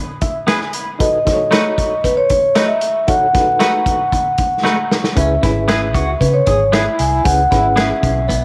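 A mellow soft-mallet vibraphone carries the melody in this driving, passionate uptempo 1960s-style soul cut, over a barky, lightly overdriven reed electric piano with fast tremolo, clean hollow-body guitar stabs and a punchy, up-front vintage drum kit whose fill at 4.6 seconds leads to the entry of a slightly broken-up tremolo guitar riff and a round, foam-muted electric bass at 5.2 seconds, under a coat of spring reverb and vinyl crackle.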